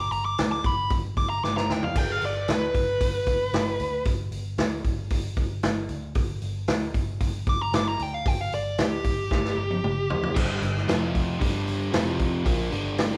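A dark, smooth lead guitar opens this short blues rock and southern rock cut, its overdriven, picked solo ringing with slapback echo from 0.0 to 4.0 seconds and again from 7.5 to 10.3 seconds, ranging from G4 up to D6. The mood is driving and swaggering at 114 BPM in a straight 4/4, centered on G mixolydian. Underneath, a vintage drum kit sits up front with a punchy kick, medium-tuned snare, dark cymbals and a rolled-off top, adding fills around 1.4 and 9.3 seconds, while a foam-muted, picked electric bass gives a round, amped low end throughout. At 10.3 seconds a biting, double-tracked overdriven guitar takes over with a low riff, and at 10.4 seconds the piece moves into a new section as the chords shift between G5 and F5. The power trio sounds like a band playing live in one large studio room, with a moderate reverb giving the mix a natural sense of space.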